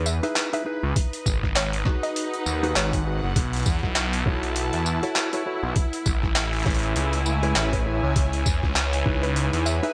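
A thick, swirling detuned saw bass sits up front, saturated and phased beneath a gritty, playful glitch hop groove at 100 BPM in C# minor, swung on the sixteenths and moving through C#m7, G#m7, B7sus4 and Amaj7. Pitched-down, overdriven boom bap drums with a high-tuned snare, handclaps, hi-hat and tambourine run throughout in gated reverb, joined by a thumpy electronic kick from 1.0 to 9.2 seconds. Dark, clean electric guitar stabs with digital delay and a smooth bowed string section both pump against the sidechain, while a woody, wave-folded pluck melody drifts in the background with chorus and delay at the start and again near 9.2 seconds, all wrapped in bright 1980s-style digital ambience.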